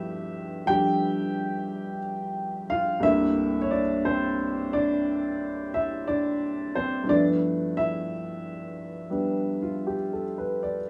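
A small room's moderate reverb gives this short solo jazz fragment an intimate ambience, with the warm upright piano sitting up front and its action noise audible under the notes. The mood is playful and sophisticated, moving at a slow 59 BPM in 4/4 with a swung eighth-note feel in G mixolydian, tuned to A4 = 438 Hz. The piano carries everything alone across its 10.9 seconds, ranging from C2 up to G5. Its tone is woody and a little boxy, and the long sustain lets the rich chords ring. The harmony opens on G13, shifts to C13 at 3.0 seconds, and returns to G13 at 7.1 seconds before the cut from the longer piece ends.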